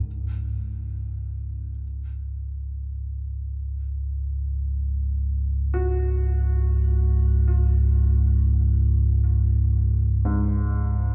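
A deep, rumbling drone sits up front from the very start, its dark blend of triangle and sawtooth tones rising through a slow attack and holding with a long release in its own reverb. This is dark ambient in free time, cavernous and ominous, tuned to A4 = 436 Hz and resting on a C#sus2 chord. Above it, a baby grand piano plays arpeggios between G#2 and F#4, fading in gradually from 0.1 seconds until the close at 11.1 seconds. The piano sits much lower in level than the drone and sounds intimate and natural, with audible action noise and short sustain, trailed by delay and shimmer reverb. A cathedral reverb with a 6.5-second decay surrounds the whole passage, which is cut from a longer piece.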